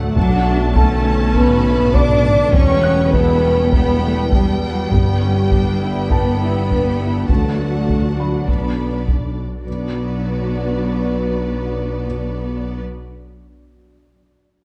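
A cinematic, hybrid orchestral and electronic film score cue in 4/4 with a tense, relentless mood, heard as a short cut from a longer piece. A lush violin section carries the vibrato-rich melody while a second violin line joins it, and an expressive viola section with portamento fills the background. Dark, roomy French horns, a bright and very quiet trombone section, and an ethereal, detuned pad hold sustained chords, with a close, rich cello section, a distant double bass section and a close-miked tuba anchoring the low end. A heavy-stick taiko ensemble drives the cue in a live room, and a soft, felt-muted upright piano adds intimate high texture before both drop away near 9.7 seconds. The harmony moves through Bm7, Emadd9, G and D, settling on Bm, and the dark production sits in a moderate scoring-stage reverb.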